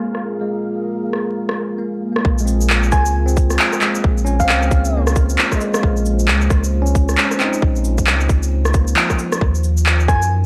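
Overdriven electronic percussion of rim click, shaker, cabasa and handclaps sits up front through this nocturnal, ghostly future garage excerpt, re-recorded in a large room and swung on the sixteenths, while a deep, dark detuned pad and a bell-like tine electric piano with tape echo pump against the sidechain from the start. A flickering, grainy texture hovers in the background under an opening filter sweep until a tight, layered kick and a round sine sub bass arrive at 2.2 seconds, as the harmony settles from Bb7(no3) onto Bbm7 and later Ebm. A gentle, keys-like FM lead with chorus and cassette wear adds a brief high phrase from 2.9 seconds, all within a dry, gritty, low-passed sound dusted with vinyl crackle.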